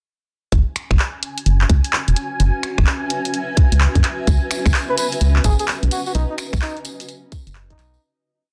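A hollow, organ-like FM bass sits up front from 0.5 s in this soulful, late-night two-step UK garage piece at 128 BPM, its skipping syncopated line riding a tight, layered kick and dry analog hats, snaps and claps swung on the sixteenths, with soft clipping on the snare. A silky vintage string machine holds a high chord and a cloudy granular pad drifts beneath, both pumping with the sidechain, as the harmony moves from F#9sus4 to C#m7 and B. A jingly tambourine joins later, and at 4.9 s a veiled, bucket-muted trumpet enters with forceful, jazz-style vibrato phrases echoed by digital delay, just before the dense, heavily limited mix fades out from 5.5 s.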